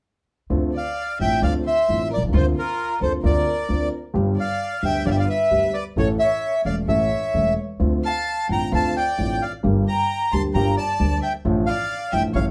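A tense, passionate tango fragment in D minor opens at 0.5 s with a deep-bassed concert grand piano up front and a woody, pizzicato upright bass, moving through a rubato 132 BPM pulse over chords such as Dm7, Bbadd9/D, G and A. At 0.8 s a dark, reedy bandoneon takes the melody, close-miked, dry and full at the front of the mix, while a single bowed violin plays a softer second line beneath it with warm vibrato, gentle attacks and expressive portamento. The band plays live together in one room under a wet studio reverb, and the passage runs until 12.5 s.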